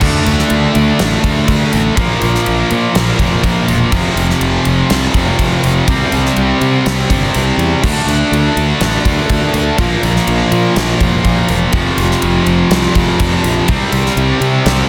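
A straight 4/4 drive at 123 BPM pushes this heavy hard rock excerpt in D minor, where a scooped, double-tracked high-gain guitar sits up front with a distorted riff that cycles through D5, Bb5, F5 and C5 power chords roughly every two seconds. Beneath it, a fingered electric bass adds growly, overdriven fuzz, while a gated 80s drum kit brings a punchy kick, fat snare and bright crash and ride cymbals in an airy stone-room sound. Light studio reverb and a dense, heavily limited modern master keep the whole 15 seconds tight and forceful.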